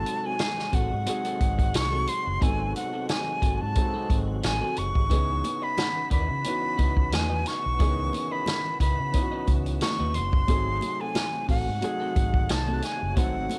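Lush and warm, this 89 BPM 1970s-style soul piece with a light sixteenth-note swing sets a breathy, bright jazz flute melody up front over a mellow grand piano, sustained tonewheel organ chords spun through a fast rotary speaker with chorus vibrato and key click, a slightly broken-up picked electric guitar riff through a small old amp in the background, a vintage drum kit of tight kick, snare and hi-hat, a round, foam-muted fingered electric bass, a very quiet, bell-like celesta and high-tuned congas that join at 5.1 s, with cassette-tape colour on the flute, piano, organ, guitar and drums and small-room ambience from a home recording.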